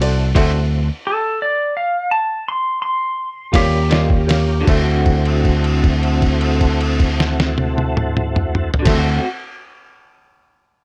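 A bright, twangy clean lap steel guitar leads this swaggering, rollicking slow blues in 12/8 at 52-59 BPM in D mixolydian, playing a compressed slide melody from 1.1 s to 4.7 s over a slowing first half capped by a drum fill, before a held note sustains to 8.8 s, backed by a muffled, pitched-down lo-fi sampler-style drum kit with thumpy kick and fat snare, a dark, round fingered electric bass up front, a smooth tonewheel organ with key click, chorus vibrato and slow rotary speaker, a woody, boxy upright piano with audible action noise, and a slightly broken-up electric guitar with tremolo through a small old amp, set in light reverb.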